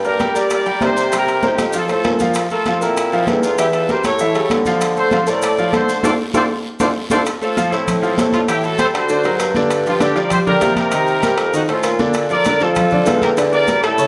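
This driving, danceable salsa excerpt in D minor opens with a bright, brilliant grand piano comping up front over a mellow bassoon carrying the bass line with light vibrato, while close, thick-skinned congas and grainy maracas set the groove at 196 BPM in a straight 4/4. A punchy, vintage horn section takes the melody almost at once, sitting up front with a pop-style ensemble edge. Ringing metal-shell timbales, a raspy, saturated guiro and very quiet, distant bongos fill out the percussion in the background, with the bongos dropping out after 7.2 seconds and returning at 12.2 seconds. A band accent and drum fill mark the turn into the second statement of the theme around 7.3 seconds, where the harmony moves from a Dm7 through rootless and altered colours back toward Gm7, Cm7 and F7. A moderate large-studio reverb gives the whole ensemble a roomy sheen.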